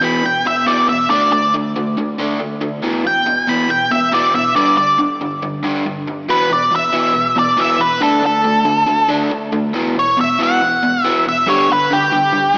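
A swaggering, confident rock passage at 139 BPM opens with an octave-fuzz lead guitar soloing over an overdriven electric guitar riff, both playing together from the first moment to the end at 12.6 seconds. The lead carries the melody in a dark, fuzzy, distorted tone, picked and sitting up front, ranging from G4 to B5. Beneath it, the rhythm guitar is bright and compressed, double-tracked with a slapback echo, its riff spanning E2 to D4 and also placed prominently in the mix. The harmony moves through power-chord shapes on E, D and G, with an Esus2 arriving near 9.7 seconds before a return to G. A lush digital hall reverb gives the whole a big arena feel, though the sound also carries the character of a small speaker, and the clip is cut from a longer piece.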